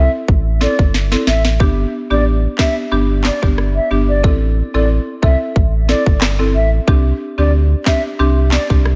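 Lightly reverberant studio sound frames this tough, sultry dancehall cut in A minor at 91 BPM, where a deep, sine-like sub bass with octave sounds from the start and an overdriven, up-front electronic drum kit with tight kick, sharp snare, rim clicks and handclaps enters at 0.3 s, with a fill from 0.9 s closing the break at 1.6 s, while a buzzing, woody marimba pumps beneath a distant, reedy baroque flute melody with vibrato and delay over chords moving from Am through G to Csus2.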